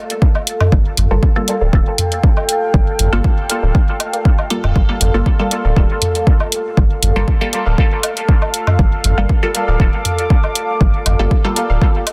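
A moody, evolving pad and a muted, phaser-treated dub chord stab with dub echo open this meditative dub techno excerpt together, soon joined by dark electronic hi-hats, a punchy up-front kick, echoing electronic woodblock and toms, a round, soft sub bass, and from 1.5 s a very quiet, detuned chord-stab riff, with the pad, stabs, percussion and bass all sidechain-pumping in a dense, heavily limited master.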